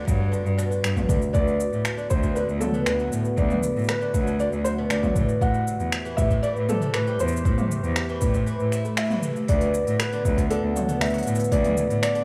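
A digital studio reverb gives this short folktronica excerpt a soft sense of space, with a playful yet delicate mood in a steady, straight four. A boxy, shimmering twelve-string acoustic guitar fingerpicks octave-doubled arpeggios, with audible finger squeak and a digital delay trailing behind it. A clear, focused bowed cello sits up front carrying the bass line with vibrato, while a warbling, nostalgic tape-like pad holds detuned, lo-fi sustained chords with chorus in the background. A soft, overdriven electronic kick and an overdriven electronic kit of finger snaps, smooth hi-hat, shaker and toms, both re-recorded in a small room, keep the pulse. At 1.3 s a felt-muted upright piano enters with a mellow, intimate melody through a digital delay, and after a band accent at 9.0 s the music moves into a new section at 9.5 s as the chords return to D6.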